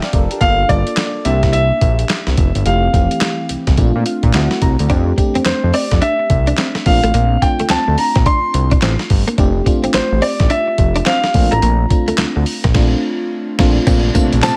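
Set in digital ambience, this bouncy, punchy new jack swing R&B excerpt at 107 BPM with a swung sixteenth feel puts a gritty, compressed, pitched-down boom bap sampler-style kit with thumpy kick, handclaps and tambourine and a fat, detuned sawtooth analog bass up front beneath a warm, deep-bassed concert grand piano melody, while a lush, dreamy FM electric piano with a soft pad layer and chorus plays a fill at 3.8 seconds, a clean, direct-recorded picked electric guitar riff enters at 4.9 seconds, and a bowed string section with vibrato and portamento arrives in the background at 13.9 seconds.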